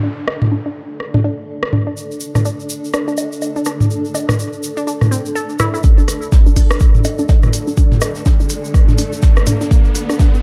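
Minimal techno with a hypnotic, sparse mood and a swung 4/4 groove, cut from a longer piece, with a dark, warm production and little reverb. A juicy, squelchy blip pluck riff with phaser, dub echo and sidechain pumping runs from the start over a cloudy, blurred granular pad with its own built-in reverb, while a sound effect sweep opens the passage. A booming, tape-warm analog drum machine enters at 0.3 seconds with rim clicks, toms and woodblock, and a grainy, close egg shaker joins at 2.0 seconds. At 5.8 seconds a build-up begins: an up-front deep electronic kick arrives with a brushed jazz kit in the background, its high-tuned snare and hats dark and rolled-off. A very quiet, punchy sine sub bass and clicky electronic hats follow, and a riser climbs from 7.6 seconds to the end as a filter sweep works on the synth arpeggio throughout.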